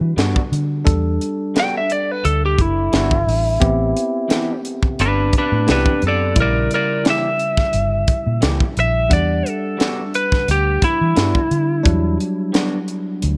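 A lightly driven, twangy lead guitar solos up front through this brooding, soulful straight-eighth soul blues in E minor at 87 BPM, a short cut from a longer piece that moves from Em9 to Am9, through A#dim7 and back to Em9. A dark, round, foam-muted fingered bass and a tight funk kit with a high-tuned snare sit up front alongside it, while a bell-like, clean tine electric piano provides accompaniment. A slightly broken-up guitar through a small old amp adds stabs in the background, all wrapped in light studio reverb.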